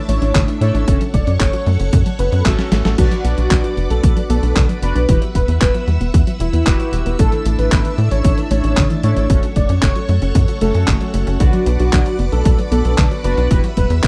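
Lush, mellow string-machine chords with an ensemble chorus open this melodramatic, danceable italo disco passage, sounding together with a detuned unison pluck whose background arpeggios carry tape echo and bright, fat analog synth brass stabs with chorus and a cassette-tape tint. A thick, dark unison lead carries the melody with vibrato and tape echo, while a tight, saturated sequencer bass sits up front and drives the groove with its filter-plucked sawtooth bite. A gritty, compressed sampler-style kit of hi-hat, snare, handclaps and crash plays in a small room, and an electronic kick joins at 0.4 seconds with a punchy, tape-warm thump. A short drum fill arrives at 2.5 seconds within the single section, which cycles through Asus4, F#m, Bm and Emadd9 twice. The brass drops out at 13.7 seconds, and the dry, close 1970s-style studio sound, touched by digital ambience, gives way as this cut from a longer piece ends.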